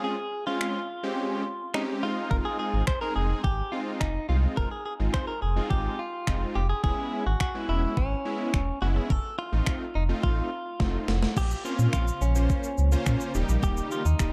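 This is a short, euphoric, upbeat dance-pop excerpt in a straight 4/4, opening with a clean, direct-recorded electric guitar picking out the melody through spring reverb and tape echo, alongside a fat, detuned sawtooth polysynth whose bright chords carry chorus and sidechain pumping. Gated 80s digital drums join at 0.6 seconds, thumpy and overdriven, with a gated-reverb snare, finger snaps, shaker and crash sitting up front with a small-room character. A deep, full sub bass with an added octave enters at 2.3 seconds, pumping with sidechain and sitting loudest in the mix. The harmony moves from Dbmaj7 through Fm7, E6 and F7 before a drum fill leads into a new section on Bbmadd9 and Eb. At 12.1 seconds a very quiet, ethereal pad with slow attack and ensemble chorus drifts in beneath, all within a dark digital ambience.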